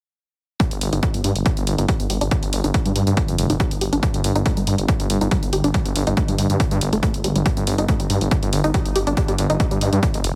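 Heavily compressed with a radio-like squeeze and a touch of reverb, this dark, hypnotic stretch of driving peak-time techno is cut from a longer piece. A punchy, layered kick sits up front beside a thick, menacing detuned saw bass with pumping sidechain, while dry, overdriven hi-hats tick above. In the background a tight sequenced sawtooth riff runs through chorus, phaser and delay under a filter sweep, and from 2.2 s a very quiet, moody pad drones low beneath it all.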